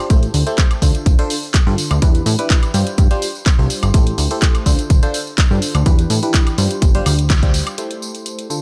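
A biting, barking FM electric piano carries the riff through this energetic, soulful piano house excerpt, its percussive, warbling tone colored by phaser, tape echo and sidechain pumping as it cycles through Am7, Dm7, Em7 and G7sus4. Beneath it, a plucky analog bass with a funky filter pluck pumps against a punchy, up-front electronic kick, while a tape-toned house kit of handclaps, hi-hat, tambourine and woodblock fills out the groove in a small-room sound. The band hits an accent at 7.3 seconds before the kick drops out at 7.5 seconds, leaving the piano and kit to ring into 8.6 seconds.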